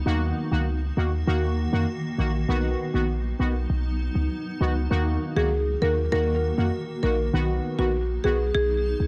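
A straight 4/4 dancehall groove at 99 BPM in Eb minor sets a sultry, hypnotic mood in this short cut, where a deep, boomy 808-style bass and punchy, brassy synth stabs with chorus sit up front over a blurred granular cloud pad with built-in reverb, moving between Ebm and B, until a buzzing, woody marimba with tape echo carries the melody from 5.4 seconds in a digital ambience.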